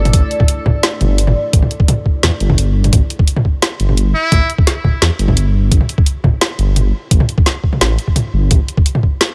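A rumbling, detuned sawtooth bass sits up front through this cinematic, heavy half-time drum and bass excerpt at 172 BPM, joined by a gritty, pitched-down kick that drops out from 2.6 to 2.9 seconds and an electronic kit with a woody snare, bright hats and toms. A moody analog pad with chorus, phaser and sidechain pumping holds sustained chords only until 2.9 seconds, while a buzzy, distant trumpet with a metal mute, colored by 12-bit sampler grit and tape echo, sounds a brief jazz-style E4 at 4.1 seconds.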